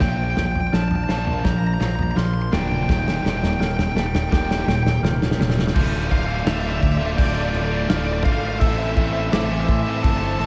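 Big, arena-sized sound fills a concert hall reverb in this brooding, cinematic post-rock passage in D minor, cut from a longer piece and moving at a straight 84 BPM in 4/4. Up front, a loose indie drum kit with a tight kick, medium-tuned snare, crash and toms plays a fill through a build-up over the first 5.7 seconds, joined by a growly, punchy fuzz fingered bass. A cranked stack guitar, bright with overdrive and spring reverb, sits in the background beside a very quiet, crunchy overdriven guitar riff, while a very quiet, twangy clean electric guitar picks arpeggios until 5.8 s. Above them, a bluesy lead guitar sings a distorted melody between D5 and C6 through slapback echo and digital delay, and a mellow glockenspiel struck with rubber mallets rings out bell-like arpeggios with the same echo and delay. A dark, woody studio string section bowed sul tasto with vibrato holds lush, very quiet chords underneath as the harmony moves from Bbadd9 and Eb to Dm and Am.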